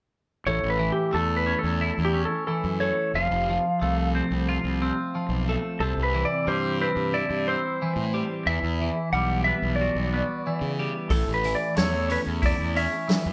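A straight, even 4/4 pulse carries this hypnotic, kaleidoscopic slice of psychedelic rock, cut from a longer piece. From 0.5 s a bright, twangy twelve-string electric guitar picks a clean, compressed riff through a phaser, while a fuzz-laden fingered bass growls underneath with overdrive and a clean lap steel sings a twangy slide melody above. The three parts circle a progression of A, F, C and Emadd9 before returning to A at 11.1 s, which is when a vintage acoustic drum kit joins with hi-hat, a tight kick and a medium-tuned snare, its top end rolled off. Every part sits up front, and the band sounds as if it is playing live together in one studio room with a moderate touch of reverb.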